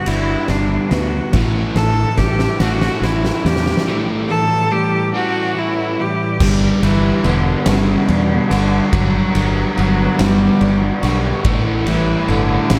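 A straight 6/8 pulse carries this soaring, euphoric post-rock excerpt, with a drum fill running to 3.9 seconds during the opening build-up before a new section arrives at 6.4 seconds. An up-front bowed cello carries the melody with intense vibrato and tape echo, set over a double-tracked, overdriven semi-hollow guitar riff, a clean electric guitar's chorused, echoing arpeggios in the background, and a round, punchy fingered bass. The oversized, low-tuned kit brings a boomy kick, fat snare and dark crash and ride cymbals in a pumping room, and the dreamy mix is soaked in lush hall reverb.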